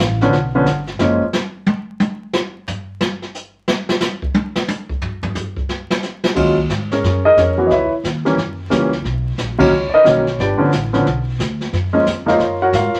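An up-front concert grand piano carries the melody in this moody, smoky swing fragment from a jazz piano trio, its tone warm with a deep low end. The piano and a woody, thumpy pizzicato upright bass sound together only briefly before dropping out at 1.2 seconds, leaving the brush kit to take a solo. The drums sit close in a natural studio room, with dark cymbals, a medium-tuned snare, a boomy kick, hi-hat and toms. The piano returns at 6.3 seconds and the bass at 6.4 seconds over lush extended minor and major seventh harmonies, and the full band hits an accent at 9.5 seconds. A short, wet studio reverb and a layer of vinyl crackle give the recording a hazy, late-night atmosphere.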